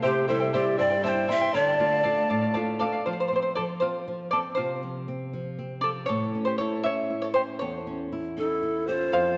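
Melancholic yet festive, this Andean folk piece in a straight 6/8 is cut from a longer performance and set in a wet concert-hall reverb with a dark, warm production. Breathy, bright cane pan pipes carry the melody up front with vibrato, tongued chiff and a tape echo, while a breathy wooden quena with a straight tone and crisp attack plays a second line alongside them. Both winds sound from the start, drop out at 2.6 seconds, and return at 8.4 seconds. The fingerpicked charango accompanies throughout and takes a solo from 3.1 to 9.1 seconds, its double strings shimmering with some octave-doubled courses, sitting prominently in the mix. A fingerpicked flamenco guitar supplies a low, warm acoustic accompaniment throughout as the harmony moves from C and Dm to F5 and A.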